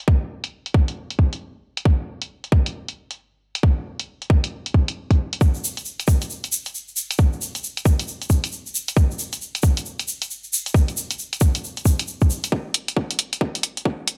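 Late-night and skippy, this swung UK garage fragment, cut from a longer piece, sets a tight, tape-warm, high-pass-filtered electronic kick drum, layered and re-recorded in a large room, up front beside a low-pass-filtered analog electronic hi-hat, while a grainy, bright egg shaker joins at 5.4 s in a dry, gritty digital ambience before a build-up arrives at 12.5 s.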